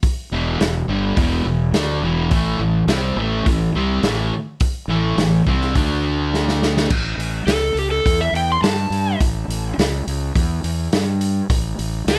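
An overdriven slide guitar enters at 7.5 seconds with a warm, fingered solo lead in a high register, carrying plate reverb and tape echo over a raunchy, swaggering blues rock and southern rock groove at 105 BPM in a straight 4/4. Before it, a bright, double-tracked fuzz guitar picks a distorted riff through Em7, Am7 and D5 until 6.9 seconds, as a drum fill closes, and the harmony then moves to A7. Beneath it all, a growly fingered bass with overdrive and a lo-fi, muffled vintage kit with dark cymbals and a punchy kick drive this fragment of a longer piece, all set in light reverb.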